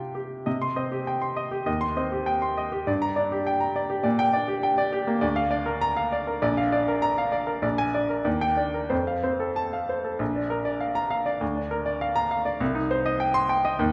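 The rhythm moves in 2/4 at 100 BPM with a rubato feel, pushing and pulling through this brilliant, sparkling classical study for virtuoso piano. A clear baby grand plays solo from 0.0 to 13.9 seconds, its natural tone sitting up front with a short sustain and spanning Bb1 to C6. The harmony begins in C minor, moving through Cm and Gm before turning to Bb major at 5.2 seconds, then passing over Bb7, Ebmaj7 and F. A new section arrives at 10.2 seconds, returning to Bb before closing on Cm. A wet recital hall reverb surrounds the instrument with a 1.6-second decay, and the passage is cut from a longer piece.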